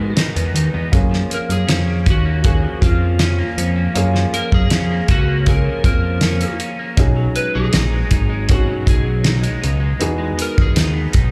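Heard live through a venue's PA with club reverb, this laid-back, nostalgic bedroom-pop fragment pairs a slightly broken-up electric slide guitar melody, colored by chorus, slapback echo and delay, with a twangy, picked electric guitar carrying chorus and vibrato, an intimate, woody upright piano with audible action noise, a fat, detuned analog bass with a plucky filter, and a cloth-damped, thuddy drum kit with a tight kick and rolled-off top that enters at 0.2 s, all moving through Emaj7, F#maj7 and B6 chords.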